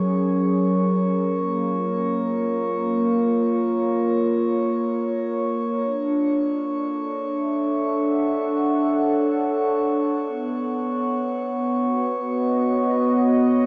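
Ambient music at 54 BPM in a straight 4/4, with a weightless, warm mood. A warbling, wave-folded analog synth pad sits up front, holding slow-attack chords through chorus, shimmer reverb and a filter sweep across the whole 13.7 seconds, moving from F#add9 through A#m7 and Dmaj7 to B. A glassy, ethereal glass harmonica adds a quieter high texture with shimmer reverb, and both sit in a drenched cathedral reverb with a 6.8-second decay.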